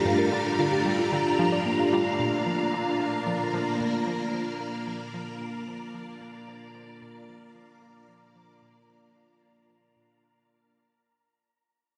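A lush, vintage string machine sits up front with mellow, full-bodied sustained chords through ensemble chorus and shimmer reverb, moving from Gm7 to Bb at 2.2 seconds in this hypnotic, mysterious slice of sequencer-driven ambient space music at 112 BPM in 4/4. A soft, dark round pluck plays fading arpeggios only until 2.0 seconds, while a detuned analog pluck with a filter sweep repeats a low riff in the background under chorus and delay. An airy, breathy wind-like noise texture holds a single high tone, and the whole passage is steeped in a wet hall reverb.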